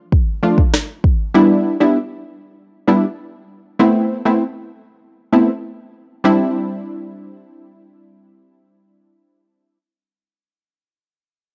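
Dancehall excerpt at 98 BPM in C major, bouncy and summery: a gritty, electronic afro-pop drum kit with a deep kick, rim click and sharp snare plays up front only from 0.1 to 1.2 seconds, while a punchy, detuned sawtooth and square-wave chord stab with a plucky filter, chorus and plate reverb carries the harmony through Dm, Em7, Amadd9 and Cadd9 until 9.8 seconds, all colored by cassette tape and a small, wet room.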